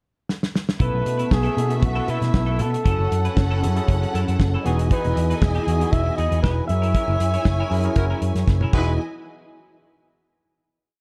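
A damped 70s drum kit opens with a fill at 0.3 seconds before this celebratory, glamorous disco piece settles at 117 BPM in E major, its four-on-the-floor beat and sixteenth-note hats joined at 0.8 seconds by an up-front octave bass through an envelope filter, a twangy clean electric guitar with analog chorus chopping sixteenths in the background, a worn, lightly overdriven tine electric piano pushing spread chords, a distant, lush string section swelling long notes, and a warm flugelhorn with slapback echo singing a jazz-style, motif-based melody, until a tight horn section punches in at 8.0 seconds and the band accents lead into a final hit, all within a dark, small-room production.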